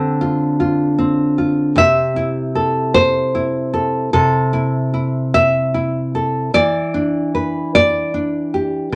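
The rhythm moves in a loose, rubato 6/8, its dotted-quarter pulse settling around 50 BPM, so the phrase seems to breathe rather than march. This is a short excerpt of solo fingerstyle folk in A minor, melancholic and wistful in mood, played on a single nylon-string guitar that carries the whole piece from 0.0 to 8.9 seconds. The fingerpicked tone is full-bodied, with a deep classical character, sitting up front in the sound and ranging from C3 up to E5. The harmony drifts from Dm7 to Am/C at 1.8 seconds, then lingers there before turning to Em7 at 6.5 seconds, where the fragment is cut from a longer piece. A moderate studio reverb adds a modest sense of room around the instrument while keeping it intimate and close.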